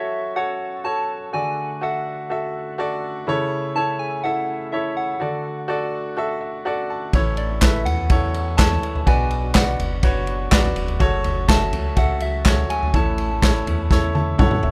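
A clear, polished baby grand piano sits up front in this uplifting, piano-driven pop excerpt in A major at 124 BPM, moving through F#m, D, A/C# and D before settling into A, Bm, F#m and A, with piano fills at 6.2 and 13.9 seconds. A gentle, keys-like FM synth lead with a round, bright tone and chorus carries the melody, while a gritty, overdriven tonewheel organ holds sustained chords in the background, coloured by key click, chorus vibrato and a slow rotary speaker. At 7.1 seconds the band arrives: a deep, round analog bass, a very quiet fingerpicked jumbo steel-string guitar playing a full-bodied riff, and an unplugged drum kit played with bundle sticks. The kit has a tight kick, medium-tuned snare, dark ride cymbal, toms and handclaps, sounding roomy yet up front, and it adds a fill at 13.9 seconds. The excerpt has the small-room ambience of a rough home demo and a warm, hopeful mood.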